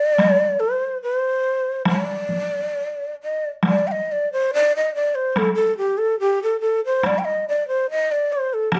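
A breathy bamboo shakuhachi carries the melody from the very start, its end-blown tone soft in attack, close-miked and set up front, with vibrato colouring notes that range from G4 to G5. At 0.2 seconds a taiko ensemble joins, struck with hard sticks, its acoustic drums sounding distant, as if heard across a large room, yet still placed prominently in the mix. This short cut from a longer piece of Japanese traditional chamber music moves at 71 BPM in 2/4, though the rubato feel lets the pulse breathe freely. Set in D in the sen mode, the mood is calm and austere, with a light reverb around the sound. The opening passage gives way to a new section at 3.6 seconds, and both instruments continue together to the close.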